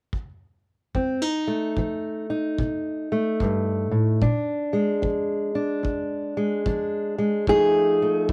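Soulful and rollicking, this brief cut from a longer acoustic country blues in F mixolydian swings at 74 BPM in 4/4, as a quiet, airy, tight kick drum played with brushes opens at 0.1 s and a dark, woody, boxy fingerpicked steel-string acoustic guitar with old strings enters up front at 1.0 s to carry the melody through F7 and Bb7, all with the character of a home cassette recording in a booth with moderate ambience.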